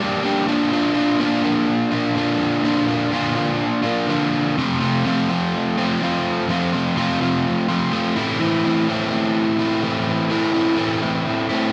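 A crunchy, overdriven electric guitar carries this short rock fragment entirely on its own, picked and double-tracked so it sits thick and up front in the mix. Its tone leans warm, ranging from F2 up to G4 as it moves through a bittersweet, cool mood in a straight 4/4 feel. The harmony shifts from Bb to F at 4.6 seconds and settles on Am at 8.2 seconds, giving the passage a gently unresolved tint. A wet studio reverb surrounds the guitar with a sense of room, and the whole piece lasts just under twelve seconds, clearly cut from a longer work.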